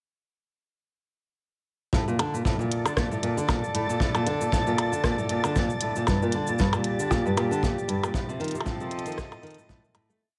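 Folktronica in Bb major at 116 BPM, this short, playful piece settles into a gently swung 4/4 groove from 1.9 seconds. A full-bodied nylon-string guitar sits up front, fingerpicking a deep, classical-toned arpeggiated pattern in a low register, colored by tape echo and plate reverb. Beneath it, a soft, punchy kick with a dark, saturated edge pairs with a minimal electronic kit of clicky closed hi-hat, rim click, shaker and percussion blips that feel like found sounds. From 2.5 seconds a distant, reedy string quartet with a gut-string, period-style tone holds slowly shifting bowed chords, roughened by vintage 12-bit sampler grit and plate reverb. A grainy, flickering texture adds a held high note with its own reverb over chords moving from Bbmaj7 through Gmadd9 to F7, and the whole piece fades out from 7.5 seconds in a moderate studio room, its top end stopping at about 10.9 kHz.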